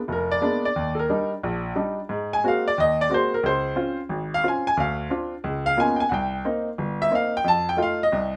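A clear baby grand piano plays alone in this brief jazz excerpt, its natural, up-front tone and short sustain giving each chord a crisp edge over a swung 4/4 feel. The harmony moves through rich extended chords, from Bb7b9 and Ebmaj7 through Ab9, Dbmaj7 and Db13, before settling on Cm7 at 6.1 seconds and F7 at 7.4 seconds. A moderate studio reverb lends the sophisticated, warm passage a touch of room around the instrument.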